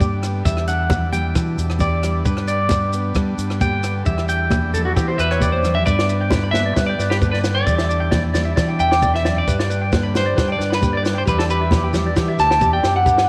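Set in a moderate echo chamber with studio ambience, this sunny highlife guitar band excerpt moves at 133 BPM in a straight 4/4, swaying between Em7 and G. A round, dark fingered electric bass sits up front with a dry cocktail drum kit of punchy kick, high-tuned snare, rim click and hi-hat, while bright high-tuned congas and a grainy shekere patter underneath; in the background, a fingerpicked nylon-string guitar adds accompaniment as a buzzy overdriven combo organ with light vibrato holds sustained chords. A twangy, slightly broken-up electric guitar spins arpeggios through spring reverb and slapback echo from 0.5 s, a drum fill leads into the second section, and a clean, picked electric guitar carries the melody up front from 5.2 s.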